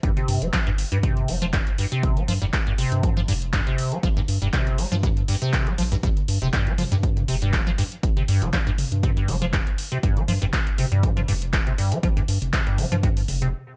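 A squelchy, resonant square-wave acid riff with lush chorus and sidechain pumping opens this gritty, driving acid house passage, joined from the start by a round, deep analog bass, a booming drum machine of handclaps, metallic hats and toms re-recorded in a large room, and a punchy overdriven kick up front, all swinging gently in a lightly reverberant space before the kick drops out at 13.1 seconds and the rest stops at 13.5 seconds.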